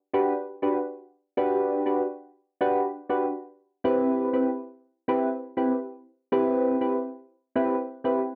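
Afrobeats excerpt with a romantic, joyful mood, where a solo soft electric-piano-like synth keys part plays from 0.1 to 8.2 seconds, round and mellow with a fast attack and decaying notes, sitting up front with chorus, phaser and cassette tape colour in a small, wet booth ambience, swinging gently in 4/4 as the harmony moves from Gmaj7 to Cmaj7 at 3.8 seconds.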